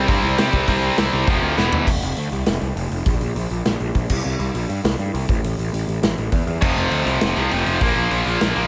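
A tight, double-tracked distorted guitar riff opens this energetic, rowdy punk rock excerpt at 202 BPM, dropping out at 1.9 seconds and returning at 6.6 seconds, while a growly fuzz bass and a punchy big-room drum kit drive on throughout, a drum fill at 1.6 seconds tipping the band into a half-time feel, all captured dry and up front.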